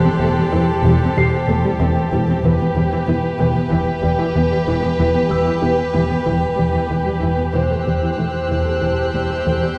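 Heard from further back in a reverberant recital hall, this tense, uneasy excerpt of a suspense film score in E minor at 94 BPM sets a punchy, decaying analog bass riff beneath soft-attack sul tasto violins carrying the melody and a second line, violas in the background, very quiet dark cellos and double basses, a bright morphing wavetable pad with phaser, a warbling organ-like drone with chorus, and a mellow, high piano texture that stops at 7.6 s, while a high violin texture returns at 7.5 s as the harmony moves from Am7/E to Em and back.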